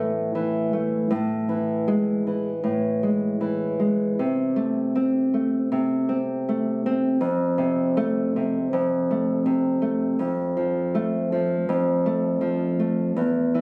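A warm, up-front nylon-string guitar carries this intimate, passionate romantic excerpt for solo classical guitar, thumb-plucked in A minor at 79 BPM with a rubato feel, moving from A5 through E/A and Am/C to F across its 13.6 seconds, captured on a phone in the room with a touch of club reverb.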